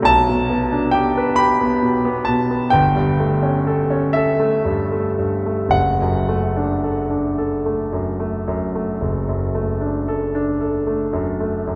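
Flowing in a lilting 12/8 with free, breathing rubato, this romantic classical nocturne for solo piano has a tender, serene mood, moving gently through G/B, A7/G and D/F# in a passage of 11.8 seconds cut from a longer piece. The concert grand sits up front with a clear, natural tone, deep bass and short sustain, ranging from low F#1 up to B5. A long, wet cathedral reverb surrounds it, and the sound of the church or hall is soft at the top end.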